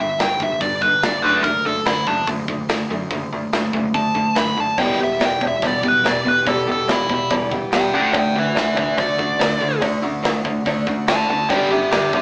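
Driving and brooding, this classic rock passage puts a nasal, parked-wah overdriven lead guitar up front for a solo over a bright cranked stack guitar with phaser, an overdriven semi-hollow guitar, a growly fuzz bass and a big rock drum kit with a punchy kick entering at 0.2 s, while a full-bodied picked steel-string acoustic guitar with finger squeak and a metallic cowbell join at 4.8 s, all in a wet, live-in-one-room sound heard through a small speaker.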